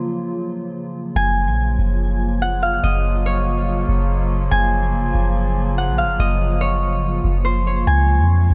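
Dreamy and blissful, this atmospheric cloud-rap excerpt moves with a half-time feel. It opens with a warbling, tape-like pad holding sustained chords alone, its nostalgic lo-fi tone softened by chorus, reverb and a low-pass filter, with a filter sweep shaping the first 1.2 seconds. At 1.2 seconds a fingerpicked Celtic harp enters up front with a ringing acoustic melody in a high register, trailed by digital delay. A soft 808-style bass arrives at the same moment, deep and round with a fast attack and decaying tail, sitting dark and prominent beneath the pad. The harmony rests on a Gbmaj7 chord before shifting to Dbmaj7 at 7.9 seconds, and the whole passage sits in a light reverb with gentle studio ambience.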